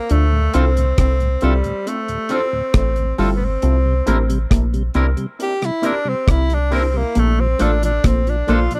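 A dry, close 1970s-style studio sound frames this smooth, tender lovers rock reggae cut, moving at 68 BPM in 4/4 over Dm7, C7 and Bbmaj7, with a breathy, intimate tenor saxophone soloing up front through tape echo from the first moment to 8.8 seconds. Beneath it, a deep, dry reggae drum kit with a tight kick, hi-hat and rim click sits up front beside a metallic, dark FM bass with a fast, decaying attack. Further back, a slightly broken-up guitar riff through a small old amp, a round tonewheel organ on slow rotary speaker and a barky, lightly overdriven tine electric piano with phaser fill out the accompaniment, while clean, twangy guitar stabs with spring reverb add punctuation.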